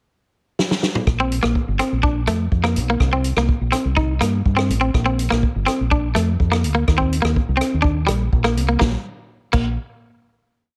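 A small room with light reverb frames this short, sunny highlife guitar band piece in Bb major at 124 BPM, opening with a drum fill on a vintage kit at 0.6 s that settles into a danceable highlife groove with a fat snare and punchy kick under a rolled-off top. A dark, round fingered electric bass enters at 1.1 s with a syncopated riff, and a brilliant, twangy clean electric guitar joins just after, picking a compressed ostinato as the chords move through Bb, C and Eb. All three parts sit up front before the band lands on a final note at 8.8 s.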